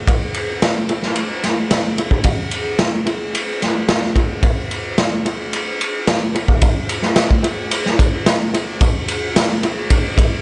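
This is a short rock fragment cut from a longer piece, moving at a straight 110 BPM in 4/4 with a trippy, hazy mood. A raw garage drum kit carries it from start to finish, with a boomy kick, a medium-tuned snare and ride cymbal sitting up front in a small, pumping room. The kit sounds saturated and gritty, its top end rolled off, and an analog delay smears its hits into a cloud of echoes. At 6.6 s a new section begins, and a very quiet, jingly tambourine joins close by, playing until 9.5 s. Light reverb and a dull, echo-heavy mix with nothing above 10.3 kHz give the whole thing a murky, woozy haze.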